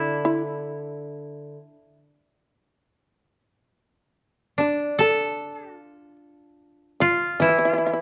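Rubato and unhurried at 73-83 BPM in 4/4, this calm, austere fragment of Japanese chamber music puts a bright, woody koto melody up front, with a powerful, buzzing, fretless shamisen, plectrum-plucked and percussive, carrying a second line alongside it. A second koto, dry and played with fingerpicks, adds low accompaniment only during the opening 1.5 seconds and again from 7.4 seconds, just after a new section begins at 7.0 seconds. Close, detailed microphones and light reverb give the plucked attacks a vivid, intimate presence.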